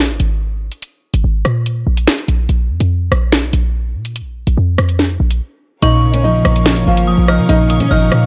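Dark and ominous, this short drill cut from a longer hip hop piece sits at 144 BPM in Bb minor with a half-time feel. It opens on a break where a punchy, tight 808-style bass with a fast, decaying attack and a noise layer sits up front over Absus2 and Bb5 chords, joined at 0.2 seconds by an electronic drill kit of sharp snare, bright hi-hats, rim clicks and finger snaps with a tape-warm edge. At 5.8 seconds the harmony settles on Bb minor and the arrangement fills out: a woody, fingerpicked flamenco guitar with old strings carries the melody through a low-pass filter, while a clean, compressed electric guitar, dark and fingered, adds accompaniment with ensemble chorus. Above them a metallic, inharmonic FM bell rings high with chorus and delay, and a clear symphonic string section holds faint bowed chords with light vibrato and a biting intensity. The production is dark and warm, set in a digital ambience.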